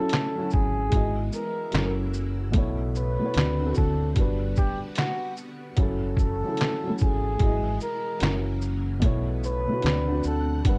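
Reflective and melancholic, this lo-fi hip hop excerpt at 74 BPM with a swung 16th feel sets a breathy flugelhorn melody with light vibrato and scooped notes over a felt-muted upright piano whose soft, mellow tone carries audible action noise, a swirling phased string machine holding sustained chords, a compressed, pitched-down trip hop sampler-style drum kit with a thumpy kick, handclaps and shaker entering at 0.1 seconds, and a round, punchy dub bass arriving at 0.5 seconds, all moving through chords from F#m7 to D7 in a light reverb.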